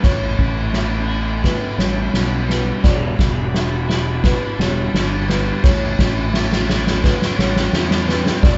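Soft-mallet drums sit up front in this cathartic, cinematic post-rock excerpt at 86 BPM in 4/4, their boomy kick, fat snare and mallet-struck cymbals filling a big room as a drum fill runs through the whole 8.6 seconds of build-up. Beneath them, a fuzz-drenched, overdriven fingered bass holds the low end, while a clean, compressed electric guitar picks arpeggios in the background, trailed by spring reverb and digital delay. A felt-muted upright piano adds soft, dark, intimate arpeggios of its own, and a very quiet chamber string section bows bright, earthy sustained chords close by. The harmony moves from A9 to Em7 at 2.8 seconds and back to A9 at 5.6 seconds. The band sounds as if playing live together in one room with moderate ambience, and the overall tone is rounded, with nothing above 7.8 kHz.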